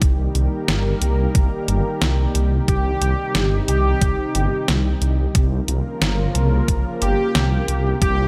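A dark, detuned sawtooth bass sits up front in this moody, nocturnal synthwave excerpt, its deep, rumbling tone beating and saturated as it pumps with sidechain between G1 and C2. The groove runs at 90 BPM in a straight 4/4, driven by a thumpy, overdriven electronic kick and a sampler-style 8-bit drum machine whose fat snare and hi-hat carry a gritty drive and the feel of being re-recorded in a small room. Behind them, a lush, thick unison pad holds sustained chords from C3 to Bb4 with a slow attack, long release and chorus, breathing with sidechain pumping through Eb, Cm and Bbm. At 2.7 s a soft supersaw melody enters on G4, smooth and up front, dressed in lush chorus, delay and a cassette-tape colour, with a sub octave beneath it. Light reverb surrounds the mix, and the passage is cut from a longer piece.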